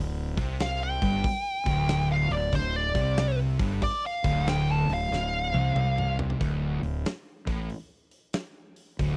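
A swung 4/4 groove at 93 BPM drags this heavy, brooding stoner and doom metal fragment in D minor, cut from a longer piece. A double-tracked fuzz guitar grinds out a low riff over a growly, overdriven fingered electric bass that sits up front, while a big rock drum kit joins at 0.4 seconds with a fat snare, tight kick, hi-hat and toms in a big room sound with a rolled-off top. A compressed, fuzzed-out lead guitar solo enters at 0.6 seconds and rides wah and slapback echo through its high register until 6.2 seconds, as a drum fill leads the way out of it. The harmony holds a suspended D7sus4 before settling onto a bare D5 for the closing stretch. The whole thing has the dry, close feel of a 1970s studio recording with warm tones throughout and a mid-forward drum sound.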